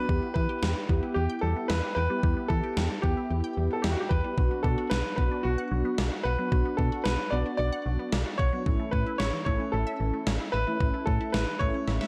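Synth-pop in B minor at 112 BPM, this short excerpt cut from a longer piece feels cool and driving in a straight 4/4. A clear, polished baby grand piano carries the melody up front, its notes given a slapback echo, while mellow synth brass, round and detuned with chorus and vibrato, fills in the accompaniment beneath. A squelchy, resonant blip pluck spins arpeggios in the background, bright and juicy, colored by phaser and slapback echo. Below them, a punchy FM bass with a dark, decaying tone and a gated 80s digital drum machine with a thumpy kick and gated reverb snare sit up front, the drums carrying a tape-warm, small-room character. The harmony moves from Em to Bm at 4.4 seconds and to A at 8.7 seconds, and a drum fill lands at 11.9 seconds, all set in light digital ambience.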